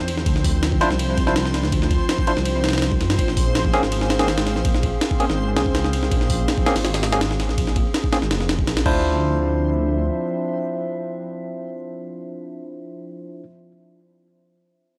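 A straight 4/4 jungle groove at 164 BPM drives this frenetic, dark drum and bass excerpt, its sampler-style kit compressed and pitched up, with a thumpy kick, medium-tuned snare, hi-hat, ride and crash sitting up front in a small room ambience. Beneath it a deep, rumbling, detuned saw bass beats with saturated weight, holding the low end until 10.1 seconds. A warbling, nostalgic square-and-triangle pad sustains chords with chorus, reverb and 12-bit sampler grit, moving from Dm9 to Bbm9 and back to Dm9. Bright, barky stabs from a tine electric piano played through a combo amp carry dub echo through to the close at 13.4 seconds, while a reversed, granular texture swells dreamily high above until 9.1 seconds. The piece opens straight into its drop, and the overall sound is dry and gritty, like a hardware recording set in a digital ambience.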